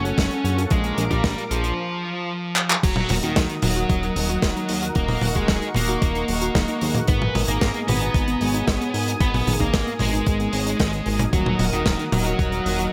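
Melodramatic, bittersweet italo disco, cut from a longer piece, where a distorted, compressed fuzz lead guitar with delay carries the melody up front from the start, joined by a filter sweep on an analog polysynth through the opening and a drum fill at 2.6 seconds, over lush, detuned unison pad chords, a glossy, dark chorused synth bass, quiet lo-fi arpeggios from a warbly dusty pluck, round brassy stabs from mellow synth brass in the background, a big acoustic rock drum kit with crash, handclaps, hi-hat, snare and toms, and a thumpy overdriven electronic kick, all in light reverb and small-room ambience.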